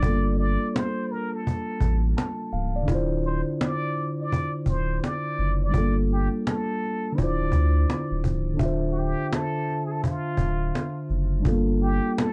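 Reflective and melancholic, this lo-fi hip hop excerpt in D minor moves at 84 BPM with a swung 16th-note feel. A breathy, distant trumpet with plunger mute sings a whispered jazz melody with wah-wah and vibrato over a mellow tine electric piano coloured by cassette tape. A deep, saturated sub bass and a snappy cajon roughened by vintage 12-bit sampler grit sit beneath them, all cycling between Gm9 and Dm7 in a dark production with light reverb.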